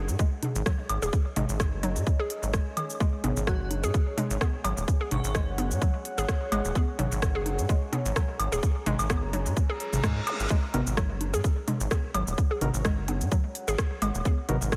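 A tight, up-front kick anchors this sparse, clinical minimal techno excerpt, set in a light room sound with a gentle swing on the sixteenths. Beneath it runs a rubbery, wave-folded square bass with a resonant filter pluck and tube saturation, pumping against the kick alongside a deep, warbling pad that sits dark and moody under chorus and its own reverb. A hollow, detuned square pluck carries the riff through chorus and delay, while a clicky, overdriven kit of hi-hat, rim click and shaker mixes with electronic toms, bongos and woodblock, both re-recorded in a small room. An airy, dreamy lead with phaser, vibrato and vintage 12-bit grit drifts in briefly at 3.5 seconds, and a reverse cymbal and zap arrive at 9.8 seconds. From 10.7 seconds, a percussive, organ-like stab decays in the background through chorus and delay.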